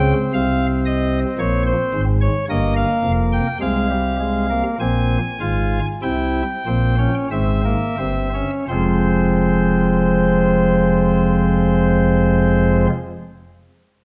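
A dark, reverberant recital-hall sound frames this solemn, contemplative excerpt of a baroque-style three-part fugue in F minor at 42-57 BPM, where a pipe organ's nasal cornet solo stop, with a distinct chiff and held up front, plays alone from 0.0 to 12.9 seconds across a range from F1 to Ab5, slowing through its opening 8.7 seconds as the harmony moves from Fm through Bbm and C7 before settling back on Fm.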